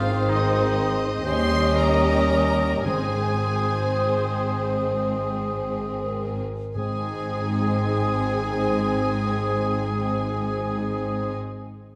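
Classical: this is a slow, romantic orchestral movement in Ab major and 6/8, played with rubato at roughly 27-43 BPM in dotted quarters, lyrical and warm in mood, and cut from a longer piece. A lush violin section carries the melody high in its range with focused vibrato, while a second, clearer violin section, a clear oboe and a mellow clarinet weave supporting lines in the background, joined by a pure, hollow-toned concert flute holding Eb6. Beneath them, a mellow bassoon and an expressive viola section with portamento and gentle attacks fill in the accompaniment, French horns sustain chords, and focused cellos and smoothly bowed double basses anchor the low end. Very quiet timpani struck with hard mallets enter at 2.9 seconds on Ab2. The tempo slows through the opening phrase up to 6.8 seconds before a contrasting passage follows, with the harmony moving from Ab to Eb7 and back to Ab. 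A wet scoring-stage reverb gives the ensemble a spacious, blended sound.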